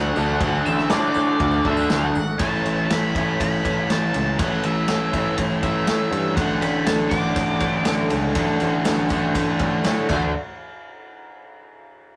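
A straight, steady 4/4 groove drives this swaggering, confident classic rock clip, cut from a longer piece. Up front, a vintage drum kit pairs a punchy kick and medium-tuned snare with dark crash and ride cymbals, while a growly picked electric bass sits low beneath a compressed, overdriven electric guitar riff. A fuzzed-out octave lead guitar carries the melody high above until about 9.8 seconds, backed quietly by a bright distorted guitar riff and, only in the opening seconds, a double-tracked hollow-body guitar. A shimmering, octave-doubled twelve-string acoustic adds picked accompaniment, dropping out at 2.4 seconds and returning at 6.4 seconds, joined each time by a jingly, close tambourine in the background. The whole thing has a rough rehearsal-room character, with saturation and a moderate studio reverb.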